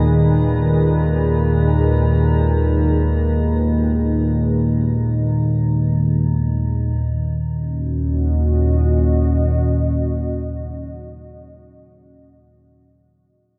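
This cavernous, unsettling dark ambient drone opens with three sustained layers at once. Underneath sits an up-front analog drone with a warbling, vintage sawtooth and pulse-wave tone, its slow attack and long release giving it a mellow, evolving presence. Above it, a deep, full-bodied pad of detuned unison saws with a sub octave holds moody sustained chords, also up front. A quieter FM drone adds an eerie, metallic, inharmonic shimmer until 7.0 seconds, when the harmony shifts to a minor-seventh chord and the pad and analog drone carry on alone to 11.7 seconds. The whole passage, cut from a longer piece, is bathed in a lush plate reverb with a long, hanging tail.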